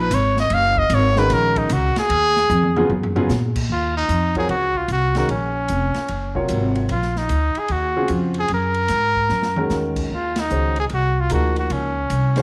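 A swung 4/4 pulse at 150 BPM, with the eighth notes pushed into a lilting shuffle, carries this hypnotic, spiritual modal jazz piece, a short cut from a longer work. A clear, forceful trumpet leads up front with a solo statement, its punchy tone marked by light vibrato and scooped notes. Beneath it, a grand piano supplies warm, natural accompaniment, while a pizzicato upright bass on gut strings sounds woody and thumpy, sitting close to the listener. An airy, polished jazz kit in a small room rounds out the band, with dark cymbals, a medium-tuned snare and a boomy kick, and it plays a fill at 2.5 seconds that ushers in a second section. From 3.7 seconds the music settles firmly into Eb dorian over a lush minor ninth chord, and a band accent lands at 10.3 seconds, all wrapped in a moderate plate reverb.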